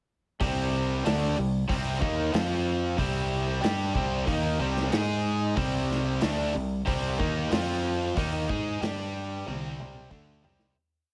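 Set in a moderate studio reverb, this short classic rock piece in C minor moves at 93 BPM with a driving, swaggering power-chord riff from 0.4 seconds, played up front by two bright, overdriven guitars: a cranked stack and a distorted electric. A growling fingered bass, amped and overdriven, doubles the riff with simple root-and-fifth lines. A vintage kit with a punchy kick, a medium-tuned snare and a rolled-off top pumps in a small room through Cm, F5, Ab5, Ebsus4 and G5 before the fade-out begins at 8.2 seconds and a drum fill at 9.5 seconds carries it to the close on C5.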